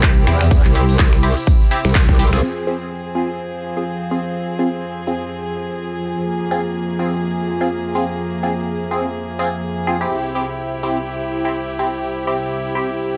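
A gritty, swaggering bass house excerpt at 125 BPM in F harmonic minor with a swung 16th feel, opening on a punchy, overdriven electronic kick, an overdriven dance kit of finger snaps, handclaps and hi-hat, a jingly tambourine and an up-front metallic wobble bass, saturated and chorused, that all drop out by 2.4 seconds after a band accent at 2.0 seconds. An earthy, bowed chamber string section holds sustained chords throughout, pumping with the sidechain, while a nasal, band-passed chord stab with phaser and dub echo gets a filter sweep from 2.4 seconds as the chords move from C to F minor and back to C. From 3.4 seconds a warbling, nostalgic tape-like pad adds mellow, lo-fi colour in a light reverb.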